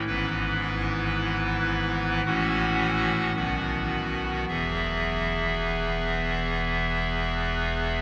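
The recording is bathed in a wet cathedral reverb with a long decay of 6.7 seconds, placing the listener in a resonant church or concert hall. Within that space, a pipe organ sounds alone, voiced on a hollow clarinet reed stop with baroque character, a touch of chiff at the start of each note and a tremulant, set up front in the sound. This short excerpt of a classical chorale-style piece has a reverent, serene mood, and the pulse moves freely in rubato over a steady four-beat metre. The organ spans a broad range, from deep notes at E1 up to F#5. The harmony moves from E/G# through F#m7/A to B at 3.4 seconds, and comes to rest on E at 4.5 seconds.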